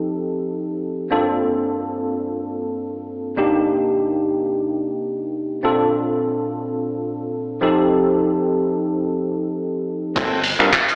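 A clean tine electric piano sits up front through a combo amp, carrying this sleek, groovy nu-disco excerpt alone in free time from 0.0 seconds, its chords moving from F9 through Gm11, Cm7 and Bbmaj9 with analog chorus, slapback echo and sidechain pumping. At 10.2 seconds a punchy picked electric bass, a dry, airy damped 70s drum kit with dark crash cymbal, finger snaps, handclaps and hi-hat, and a thumpy sampler-style electronic kick all enter just as the clip is cut off. The whole mix has an AM radio sound, as if played on a big sound system in a bare room, with a plate reverb and large studio reverb adding space.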